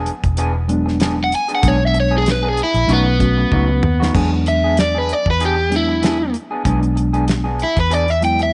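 Straight-eighth soul blues with a laid-back, rollicking mood, cut from a longer piece and moving between E7 and B7 chords. A lo-fi, slightly broken-up guitar through a small old amp plays stabs over a round, foam-muted fingered bass and a damped 70s kit with a fat snare and tight kick, which plays a fill from 3.5 to 4.1 seconds. A reedy electric piano with fast tremolo accompanies from 0.7 seconds, and a crunchy overdriven guitar enters up front at 1.2 seconds to carry the solo melody in a lightly reverberant room.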